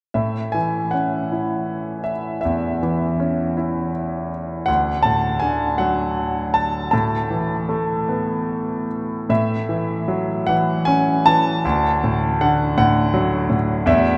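A solo concert grand piano sits up front in a vast, echoing cathedral, its clear, polished tone hanging in a reverb tail of 5.7 seconds, with the noise of the action audible close by. The music is lyrical classical piano in 6/8, played with rubato and a tender, intimate feeling. The piano ranges from deep bass notes down at D2 up to A5, its long sustain letting each chord ring out into the room. The harmony moves from A to D and Asus2, then a new phrase beginning at 9.3 seconds turns to A6 before settling back on D. The passage lasts about 14 seconds and is cut from a longer piece.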